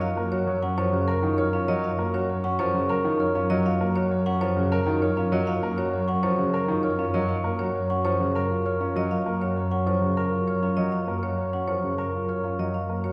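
This short, 13.1-second passage of minimalist classical pattern music opens with every part sounding together, resting on a single F# major chord at a propulsive 198 BPM in 6/4 with a straight, hypnotic feel. A bowed symphonic double bass section sits up front on a low F#, woody and lush with vibrato. A marimba struck with medium hard mallets carries the melody in a dark, smooth, percussive tone, while a present grand piano with long sustain supplies accompaniment in the lower middle register. Above it, a concert grand piano plays arpeggios with an intimate, natural tone and audible action noise, and a glockenspiel played with rubber mallets adds mellow, bell-like arpeggios that ring high over the texture. The ensemble is heard from further back in a scoring stage, whose wet reverb of 1.9 seconds gives the patterns a spacious halo.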